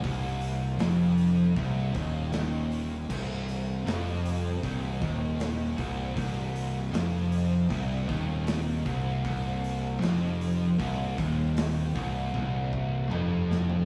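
At a steady 78 BPM in straight 4/4, this heavy, brooding stoner and doom metal excerpt in C minor sits on a single Cm chord, with a biting overdriven, double-tracked guitar riff over two dark fuzz guitars in the background, a growly, punchy fuzz bass up front, a big rock drum kit with a boomy kick and medium-tuned snare that closes on a fill from 12.3 seconds, and a very quiet, swirling vintage string machine holding phased sustained chords, all captured as a band playing live in one room with moderate studio reverb.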